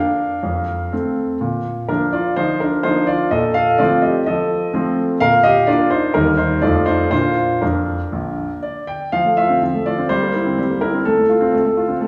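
A bright grand piano opens this brief excerpt of a classical-period sonatina, playing solo from the start to 12.1 s. The mood is graceful and cheerful, and the playing moves with a flexible, rubato feel in four. The piano sits up front with a brilliant, open tone and long sustain, spanning from deep bass notes up into the treble. The harmony moves through simple, sunny changes, settling on Bb before touching Eb and F7. At 9.1 s a new section begins, shifting toward F and C7 before landing on F/A. A wet recital hall reverb surrounds the instrument, lending it the small-room ambience of a church or concert hall.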